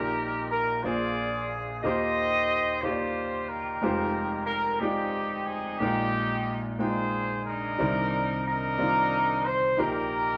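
Captured live in one room with a moderate stone-room reverb, this soulful, reverent gospel fragment in Eb major moves in a slow 6/8 at 60 BPM, as a punchy, vintage-toned horn section with light vibrato carries the melody up front over an intimate baby grand piano whose action noise can be heard beneath its accompaniment through chords such as Eb69, Fm9 and Cm9.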